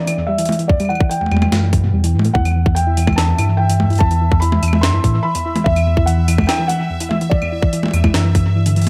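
Glitchy and cerebral, this short IDM cut from a longer piece moves at 145 BPM in a straight 4/4, centred on E minor with chords drifting from Em7 through Amadd9/E and Esus2 to Dsus4/E. A felt-muted upright piano carries the melody in a high register, its thick-felt tone intimate and mellow, while a soft, round pluck with chorus spins dark, full-bodied arpeggios beneath it, both trailed by dub echo. A gritty, compressed jungle sampler-style kit of claves, hi-hat, a medium-tuned snare and toms sits pitched up and overdriven, sounding re-recorded in a large room and echoing in dub fashion, while a tight, tape-warm electronic kick pushes up front from 0.7 s and drops out for the final moments from 8.6 s. A deep sine sub bass arrives at 1.3 s, sustained and round, anchoring the low end. From 2.4 s a faint, bright, resonant texture bubbles through random filter steps on a single high note, softened by chorus and its own reverb. 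The whole mix is echo-heavy and set in a moderate echo chamber, giving the gritty drums and muted keys a spacious halo.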